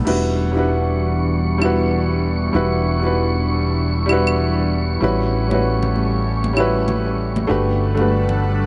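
A lightly swung groove at 97 BPM in 4/4 sets a relaxed, wistful sunset chillout mood in E dorian, moving from Em9 to A13 and then Gmaj7. Up front, a worn, boxy grand piano with audible action noise and digital delay plays accompaniment over an amped fretless electric bass with subtle chorus, while a bright, detuned, breathy pad holds sustained chords and a mellow, wind-like tuned noise texture drifts in from 0.4 seconds. Electronic crash cymbal and claves play until 6.7 seconds, ringing, saturated congas join in the background from 5.5 seconds, and a moderate, lush hall reverb wraps this short excerpt, with nothing above 10.9 kHz.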